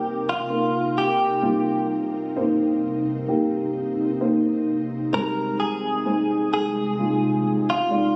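A slow, heartbroken pop ballad fragment in 4/4, where a clean, direct-recorded electric guitar carries the melody with a subtle chorus, sitting up front beside a dark, woody upright piano that supplies the accompaniment. Underneath, an ethereal, airy pad holds sustained chords with a slow attack, detuned sawtooth shimmer and its own built-in reverb, while the harmony moves from Cm7 to Ab/C at 5.1 seconds. The whole is bathed in a lush hall reverb and compression, with the character of a phone recording made in the room.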